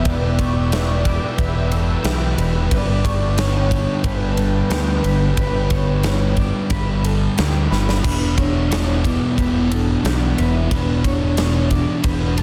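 A bright, punchy picked electric bass sits up front alongside a huge arena drum kit with bright cymbals and a punchy kick, which plays a fill from 7.7 to 8.0 seconds, driving this wistful, dreamy shoegaze and dream pop rock excerpt over Em7 and G chords. A thick fuzz guitar riff with analog chorus pairs with a crunchy overdriven guitar riff cloaked in reverse reverb, while lo-fi, slightly broken-up arpeggios from a small old amp shimmer with chorus and tape echo in the background. Above them a breathy, flute-like synth lead sings the melody with tremolo, vibrato and tape echo, and a bold, airy brassy pad holds sustained chords until 8.0 seconds, all in a small room within a dense, heavily limited modern master.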